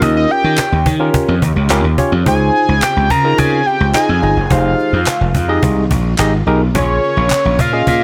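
A straight 4/4 groove at 107 BPM drives this danceable, late-night early-eighties boogie funk clip in F minor, where a punchy, overdriven slap bass sits up front beside a snappy, hard-handed cajon, beneath a fat, detuned analog sawtooth lead with chorus, vibrato and analog delay carrying the melody, a barky tine electric piano through a combo amp comping over Eb7, Dbmaj7, Fm7 and Bbm7, a very quiet swirling phased string machine holding sustained chords, and a crisp group handclap in the background from 0.6 to 7.4 seconds, all in a small room.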